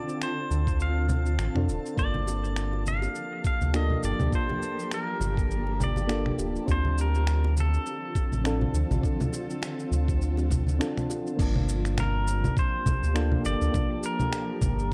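Opening together, a twangy, fingerpicked pedal steel guitar with delay and slide carries the melody over soft, warbling electric-piano-like synth keys, a shimmering, ethereal ambient pad and a very quiet glassy harmonics texture that drifts until 11.4 s, as a dusty, gritty sampler-style kit of congas, finger snaps, shaker and crash, a round, deep analog bass up front, a thumpy electronic kick and faint, ringing bongos and congas heard from 2.0 to 11.2 s settle into a smooth, wistful sunset chillout groove at 102 BPM in G minor with a swung 16th-note feel, moving between Dm7 and Gm9 in a dark, lightly reverberant mix cut from a longer piece.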